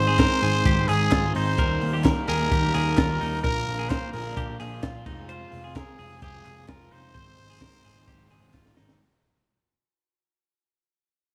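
A raspy, growling trumpet sits up front with a gritty pop-style solo melody, its light vibrato carrying a wistful, restless mood through this short cut from a longer jangly indie pop track at 129 BPM in 4/4. Beneath it, a crunchy overdriven guitar adds bright accompaniment while a clean, twangy electric guitar picks compressed arpeggios bathed in spring reverb. A dark, foam-muted vintage bass plays round, amped low notes, and a compact cocktail kit with a punchy kick and high-tuned snare drives the groove from 0.2 seconds, joined by crisp group handclaps tucked in the background. From 1.6 seconds a distant, lush symphonic string section enters very quietly with bowed, expressive sustained chords as the harmony moves through Ab, Eb, Bb and Fm. The whole passage fades out under light studio reverb, and a drum fill closes it at 8.5 seconds.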